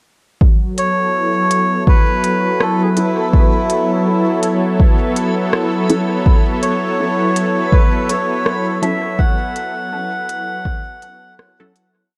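A dark, lightly reverberant mix opens this hazy, meditative ambient dub piece, where a punchy, up-front electronic kick and a sparse echoing beat of crisp hi-hat and rim click carry a swung groove beneath a smooth, detuned sawtooth pad with chorus and tremolo holding slowly shifting chords, while a reedy, breathy melodica spins a free, echoing melody, muted, filter-swept chord stabs with phaser and dub echo enter at 3.0 seconds, a reversed, granular swelling texture holds a dreamy high note in the background, and the whole piece fades out from 8.2 seconds to its end at 12.1 seconds.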